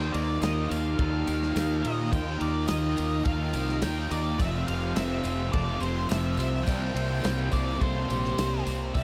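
Drenched in a moderate stage reverb, this hazy, wistful shoegaze and dream pop excerpt at 106 BPM layers a dark, delayed octave-fuzz lead guitar melody over a punchy, up-front fuzz fingered electric bass, a loose indie drum kit with a tight kick entering at 0.1 s, a crunchy overdriven guitar riff with reverse reverb, a bright, double-tracked overdriven electric guitar riff through phaser, a very quiet thick fuzz guitar riff, clean twelve-string electric guitar arpeggios with lush chorus and analog delay, an ethereal shimmering ambient pad of sustained chords, and a jingly tambourine from 0.4 s, all moving through Ebadd9, Fmaj7 and C7.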